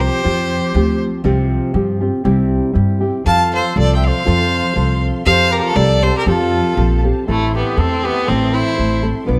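Mariachi-style Mexican folk in F major, this romantic, proud excerpt moves at 120 BPM in a straight 2/4. A clear, focused solo fiddle carries the melody with light vibrato, playing briefly at the start and returning at 3.3 seconds, while a smooth-topped classical trumpet with a soft attack plays a second line over the same spans. Underneath, an up-front nylon-string guitar, thumb-plucked with a deep classical tone, and a woody pizzicato upright bass on steel strings keep the accompaniment and bass going throughout. From 3.3 seconds a lush symphonic violin section adds very quiet sustained chords with vibrato. The harmony passes through suspended and added-tone colours around F and C before turning to A minor at 7.3 seconds, all set in a dark production with a moderate recital hall reverb.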